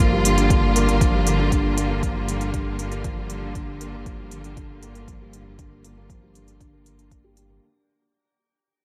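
Light reverb and a small-room ambience frame this brief, melancholic piece of piano and strings electronica, cut from a longer track and fading out across its full length. It moves at 118 BPM in a straight 4/4, resting on a Gm7 chord. A felt-muted upright piano carries the riff with a soft, intimate, vintage tone, colored by tape echo and shimmer reverb. A clear, close studio string section holds lush bowed chords with vibrato, breathing under sidechain pumping and its own shimmer reverb. A round analog bass sustains a deep G1, also pumping with the sidechain. Smooth electronic hi-hats run from the start, and a deep, layered electronic kick drum enters at 0.5 seconds, adding weight to the cinematic mood.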